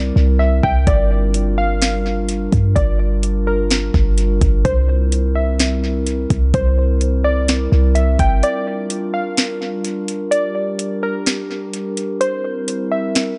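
A warbling, lo-fi pluck carries the melody, its detuned square and sawtooth tones blurred by chorus, a low-pass filter and tape echo, with a dusty noise layer and a dark, evolving character that sits up front. This is a melancholic, ethereal piece of atmospheric cloud-rap in G dorian, moving at 127 BPM in 4/4 with a half-time feel, and it is cut from a longer piece. Beneath the pluck, a glass harmonica holds sustained chords with a pure, glassy tone and slow, smooth attack, while the harmony alternates between Gm7 and C7. A clean 808-style bass, deep and boomy with a sine-like body, a fast attack and a decaying tail, anchors the low end until it stops at 8.4 seconds. A smooth R&B drum kit enters at 0.6 seconds with a soft kick, sharp snare and metallic hi-hats, its tape-tinged sound also touched by echo. The mix is dry of reverb yet heavy on echo, with the top end rolled off for a hazy, muted sheen.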